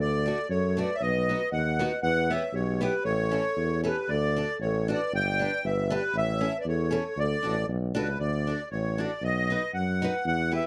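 A reedy, sweet accordion with light tremolo tuning carries the melody up front in this festive, bouncy alpine folk dance tune in D major at 117 BPM with a swung 2/4 lilt, joined by a pure, breathy sine lead with chorus and vibrato singing a second line until 7.7 s, a roomy, classical-style tuba holding the bass, and a boxy picked parlour steel-string acoustic guitar entering at 0.3 s to accompany, inside a dark mix with moderate studio reverb, cut from a longer piece.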